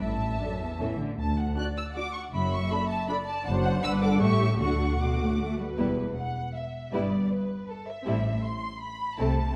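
Bowed violins, cellos and double basses open together in this quick, graceful and cheerful classical-period movement for string orchestra in triple time, cut from a longer piece. The first violins carry the melody with a lush, smooth-topped tone, their vibrato and portamento giving the line an expressive sweep, while the second violins trace a clear, intense second line from a more distant place in the ensemble. The cellos lay down a rich, even bass with woody double basses beneath them, and the violas join at 0.4 s with a warm accompaniment. At 5.8 s the harmony turns to a minor shading for a contrasting section that runs on until the end near 9.6 s. A generous scoring-stage reverb and a dark production wrap the strings in a roomy glow.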